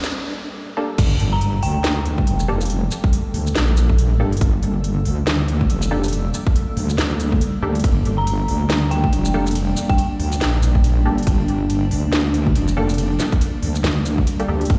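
Deep dubstep with a brooding, cavernous half-time swing, this excerpt opens on a blurred granular cloud pad, a garage drum kit with cracking snare and crisp hats, and a background riser and impact that meets the drop at 1.0 s. There a tight, up-front electronic kick and a heavy, saturated wobble bass with chorus enter beneath muted sawtooth dub chord stabs carrying chorus and dub echo. An eerie, inharmonic detuned synth bell with chorus and dub echo surfaces at 1.3 s and returns at 8.2 s, and the mix sits in a large studio reverb, as if played on a big sound system in a bare room.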